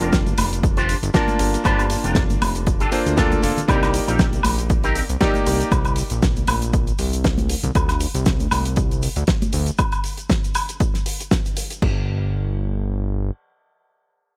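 Studio reverb surrounds this groovy, cosmic nu-disco excerpt at 118 BPM, its 16ths lightly swung over Gm7, Cm7 and Csus2. A fat, detuned sawtooth bass with sidechain pumping sits up front beside a punchy, layered electronic kick, while a damped 70s kit with dark cymbals, fat snare, hi-hat, shaker and woodblock and high-tuned congas in the background fill out the groove. A clear, clangy electric grand piano with delay and a bright, twangy envelope-filtered guitar with chorus and delay ride on top until about 5.7 seconds, and the bass carries on alone after 11.9 seconds.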